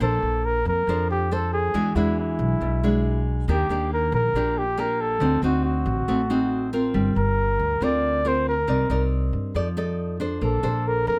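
A flugelhorn, nylon-string guitar and upright bass start together in this relaxed, romantic bossa nova, cut from a longer piece. The flugelhorn sings the jazz-style solo melody with vibrato and a smooth top, over fingerpicked, classical-style guitar and the bass's woody pizzicato. Light reverb and close, detailed microphones keep all three up front as the harmony moves from Bbmaj9 through D7b9 and Cm9 before resolving back to Bbmaj9 at 10.4 seconds.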